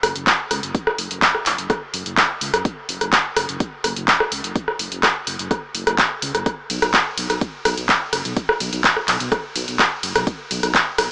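A punchy analog drum machine sits up front in this melodic techno excerpt, its handclaps, hi-hat, ride cymbal and rim click re-recorded in a small room. An electronic kick drum enters at 0.3 seconds, layered and overdriven, and plays in straight 4/4 at 126 BPM until 10.8 seconds. Beneath it, a dark detuned saw bass rumbles between F#1 and C#2, its saturated, beating tone pumping against the sidechain. A huge ambient reverb surrounds the mix, while the overall sound has the character of a small speaker. The mood is hypnotic and driving across this brief stretch cut from a longer piece.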